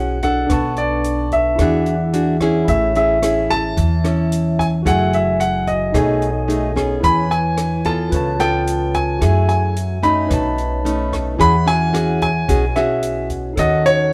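A warm grand piano carries the melody up front in this romantic, breezy bossa nova excerpt, its long sustain and audible action noise giving the line an intimate, natural presence. Beside it, a fingerpicked nylon-string guitar sits equally forward with a classical touch, while a bright, barky tine electric piano adds clean, direct accompaniment further back. A woody, thumpy upright bass played pizzicato anchors the low end, and a compact cocktail drum kit, dry with a punchy kick, keeps a straight 4/4 at 110 BPM on hi-hat, kick drum and rim click. The harmony in E major moves through rich extended chords such as Bm9, E9, Amaj7, B13 and C#aug7 before settling on E69 and turning toward D#m7b5 at 13.6 seconds. The band plays live together in a stone room with moderate reverb, and the clip is cut from a longer piece.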